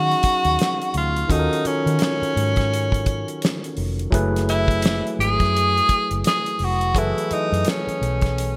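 R&B and neo-soul excerpt at 85 BPM in Eb phrygian with a swung 16th feel, sultry and soulful, where an up-front, breathy tenor saxophone solos in jazz style with scooped notes and vibrato over a gritty, overdriven tine electric piano played through a combo amp, a round, punchy, foam-muted fingered electric bass, and a dry, damped 70s drum kit with a fat snare, tight kick, hi-hat and gated reverb, all moving from Ebm11 to Gbm11 at 4.1 seconds in a bright 1980s-style digital mix with a moderate plate reverb.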